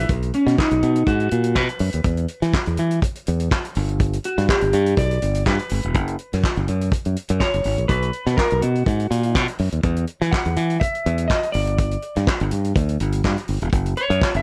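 A dark, warm production with light reverb and a studio-room ambience frames this joyful, glamorous disco passage, cut from a longer piece and moving at 123 BPM in a straight 4/4, tuned slightly sharp to A4 = 445 Hz. The soul drum kit sits up front in a tight booth, with a fat snare, tight kick, hi-hat and handclaps, its top end rolled off and its mids pushed forward. A bright, growly fingered electric bass, direct and punchy, is also up front from 0.0 s, ranging from E1 to E3. An electric guitar at the edge of break-up, dark and slightly gritty, fills out the accompaniment between C#4 and F#5. A clean electric guitar solo runs from 0.1 s to 14.4 s over a harmony that moves from Bmaj7 through E5, G and F#5, then a Bmaj7 with its third omitted, Esus2, G5 and back to F#5.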